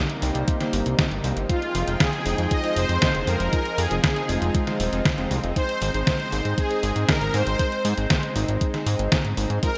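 This driving, cinematic synthwave excerpt opens at once with a smooth, soft supersaw carrying the melody up front, its tone roughened by vintage 12-bit sampler grit and trailed by delay, over a lush unison pad that sits in the background with chorus and sidechain pumping. Within the first second a detuned 8-bit drum machine brings a tape-tinged hi-hat and medium-tuned snare bathed in gated reverb, while a glossy, chorused polysynth adds dark pulse-wave stabs with delay and a fat analog bass enters, thick and saturated with a plucky filter and its own sidechain pumping. An overdriven electronic kick drum joins at 0.5 s with a knocking, layered punch. At a steady 118 BPM in straight 4/4, the harmony moves from Cm7 to Fm7 at 1.5 s and on to Ab at 5.6 s. A moderate hall reverb and bright 1980s-style digital production give the short cut from a longer piece a glossy, retro sheen.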